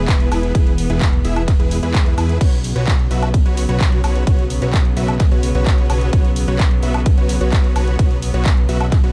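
A dark, warm digital production with a punchy, up-front kick sets the tone for this uplifting, euphoric slice of festival progressive house, cut from a longer piece and moving at 129 BPM in a straight 4/4. From the first moment a fat analog bass rumbles low with sidechain pumping, its detuned sawtooth tone evolving under a filter sweep. Above it, a huge, thick supersaw riff made from detuned unison sawtooth and triangle waves with a sub octave carries a touch of vibrato and trails of tape echo, pumping against the beat. A dark chamber string section sits underneath with soft-attacked, intimate sustained chords bowed sul tasto, smooth on top with light vibrato. The electronic kick and a layered big-room kit of crash, ride, hi-hat, handclaps and woodblock enter at 0.1 seconds, set in a small room reverb, while the harmony moves from E to Bsus2 at 2.4 seconds.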